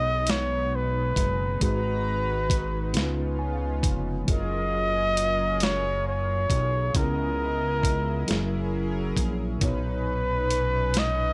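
Light reverb surrounds an intimate mix, with the drums, bass and flugelhorn up front and the electric piano set in the background. This slow six-eight R&B passage, cut from a longer piece, carries an intimate, warm mood. A flugelhorn sings the melody in a jazz style, with a soft attack, vibrato and scooped notes, while a mellow tine electric piano accompanies through its built-in speakers and adds a fill from 2.9 to 4.3 seconds. A shimmering, retro pulse-width pad with chorus holds sustained chords, and a fat, thick analog bass blends sawtooth, square and triangle waves with detuning, ring modulation and a filter sweep. A dusty, sampler-style drum kit enters at 0.3 seconds, gritty and compressed, with a thumpy kick, a medium-tuned snare and hi-hat re-recorded in a large room. The harmony moves through lush ninth and seventh chords, from B69 and G#m9 to C#9 and F#maj9, before settling on Bmaj9.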